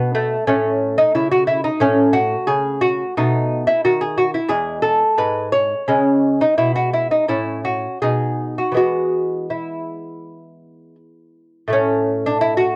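Rubato and flowing, this short excerpt from a baroque-style classical dance moves in 4/4 at roughly 79-91 BPM in E major, with a radiant mood. A solo fingerpicked lute carries everything from 0.0 to 12.8 seconds, its bright, delicate gut and double strings, some doubled at the octave, spanning E2 to C#5 and sitting up front with a cassette-tape character. The harmony passes through A, B7, E and F#m/A before settling on B and E, and the home cassette recording wraps the instrument in light reverb.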